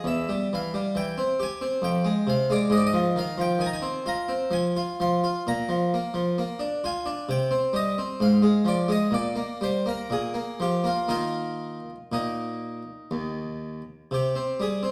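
Set in a wet stone room with a 1.1-second reverb and heard from further back, this solemn, flowing excerpt from a longer baroque-style suite movement features a solo harpsichord with a brilliant, plucked Flemish-style tone and octave strings, ranging from Eb2 to C6 in Eb major, moving in 3/4 at 59-68 BPM with a rubato feel through chords such as Fm, Bb69 and Eb5.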